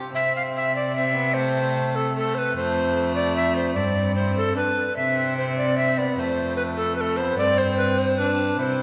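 In a steady 3/4 at 149 BPM, this stately, courtly excerpt from a renaissance-style consort dance in C major moves through C, F and Gsus4. An airy, woody tenor recorder carries the melody up front with vibrato, tongued chiff and a warm glow, while a distant, nasal single violin with a dark gut-string tone bows a second line and a rich, reedy cello plays the bass close at hand. The period-style playing sits in a wet church reverb that gives the trio a spacious, resonant setting.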